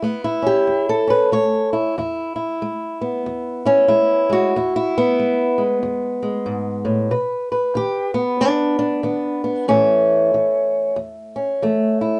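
A fingerpicked old ladder-braced acoustic guitar opens alone and carries this short acoustic country blues fragment, cut from a longer piece. The mood is gritty and swaggering, set at 93 BPM in 4/4 with a light swing on the eighth notes and rooted in E mixolydian. The guitar sits up front with a boxy, woody tone and the dark character of old strings, ranging from a low E2 up to C#5. The harmony moves from A to E at 2.0 seconds, shifts to B at 7.1 seconds, then returns to A before the passage ends. A moderate studio reverb gives the instrument a modest sense of space, while the top end stays dulled and unpolished.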